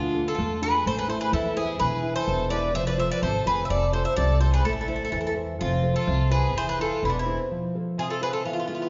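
Greek folk music from a bouzouki band, dramatic and tense, moving at 126 BPM in a straight 2/4, cut from a longer piece. The Greek bouzouki carries the melody up front, its picked double strings bright and metallic with some octave-doubled courses. A single bowed violin plays a second line alongside it, clear and focused with vibrato, though it sits distant in the mix. A classical nylon-string guitar supplies thumb-plucked accompaniment with a warm tone, while an upright bass played pizzicato on steel strings gives a woody, thumpy pulse up front until it drops out at 7.4 s. The harmony circles through Dm, Am, E and F, with a brief new section arriving on F at 7.5 s, and everything sits in a wet recital-hall reverb with the highest frequencies rolled off, like a church or concert hall.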